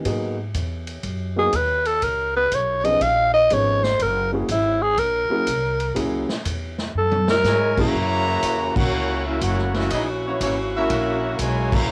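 A raspy, growling alto saxophone takes a joyful swing solo up front with vibrato and scooped notes from 1.4 s, riding over a woody upright piano, a growly pizzicato upright bass and a distant, roomy big-band drum kit with a punchy kick. The saxophone, piano and drums carry the character of a home cassette recording. After a drum fill, the piano drops out at 7.9 s as the full band arrives: a clear, tight trumpet section takes the melody from 7.5 s, a bright trombone section plays a second line, and a warm saxophone section holds sustained chords in the background, with the band punching out accents in this short swinging excerpt.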